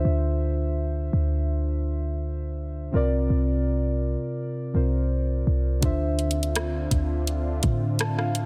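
Set in a digital ambience, this moody, longing contemporary R&B fragment at 83 BPM in D minor opens on muted, felt-like synth keys, intimate and warbling with a vintage chorus and filter sweep, sitting up front over a deep, boomy 808-style bass as the harmony moves from Dm9 to C9sus4 and back; a produced drum kit of soft kick, hi-hat and rim click enters at 5.8 seconds, and a smooth, detuned analog pad with chorus and sidechain pumping joins at 6.4 seconds.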